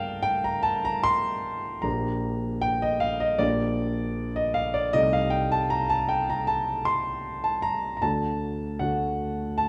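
Stormy and brooding, this romantic character piece for solo piano unfolds in G minor at 77 BPM in 4/4, with a rubato feel that lets the pulse bend. A concert grand carries everything on its own from 0.0 to 9.7 s, reaching from a deep bass Bb1 up to C6 and sitting up front in the sound. The harmony moves from Gm through Gm/Bb and Am7b5/C before arriving on D at 8.0 s. A moderate recital hall reverb with a 1.4 s decay surrounds the instrument, and the production leans dark and warm. The piano is tuned slightly low, to A4 = 438 Hz, and the passage is cut from a longer piece.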